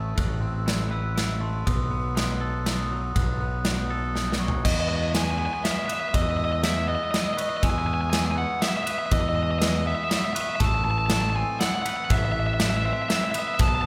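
In a straight 3/4 at 121 BPM, this hopeful, euphoric post-rock passage in E major sets sparkling glockenspiel arpeggios alongside clean, twangy electric guitar arpeggios tucked in the background, over a growling overdriven fingered bass and a punchy, up-front rock drum kit with bright cymbals. The harmony moves from Amadd9 to B7 before a drum fill at 4.1 seconds ushers in a dark, smooth overdriven lead guitar melody at 4.6 seconds over Emaj7, all ringing in a moderate concert-hall reverb.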